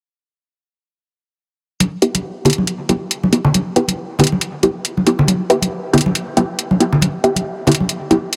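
A huge, ambient reverb with a long 4.8-second tail surrounds this heavy, dark deep dubstep excerpt in E minor, moving at 138 BPM with a half-time, swung feel that sits on an E minor chord throughout. Layered electronic hi-hats, re-recorded in a small room, enter at 1.8 seconds alongside up-front congas with a damped, thick-skinned, saturated tone and dub echo. From 2.0 seconds a muted, detuned, wave-folded chord stab with a resonant filter pluck joins, carrying phaser and dub echo under a filter sweep.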